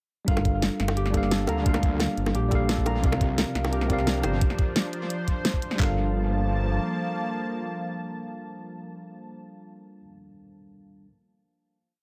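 A short, complete piece of soulful, rolling liquid drum and bass, it opens at 0.3 seconds straight into a drop. An up-front, gritty breakbeat kit with a thumpy kick and handclaps plays a two-step pattern, layered with an electronic pop kit whose fat snare and closed hi-hat roll through a dub echo, while tight, high-tuned bongos sit close and dry in the background. Beneath them, a menacing detuned saw bass pushes long gliding notes with a saturated filter swell. A clean tine electric piano carries spread-voiced held chords with syncopated pushes, and a fingerpicked Celtic harp rings out an eight-step arpeggiated sequence behind it, both trailing dub echoes. From 3.0 seconds a lush, wave-folded unison pad rises with chorus and sidechain pumping, and after the drums stop at 5.9 seconds the piece settles on a final Gm9 chord, the electric piano ringing on alone until 11.1 seconds in a light, echo-heavy mix.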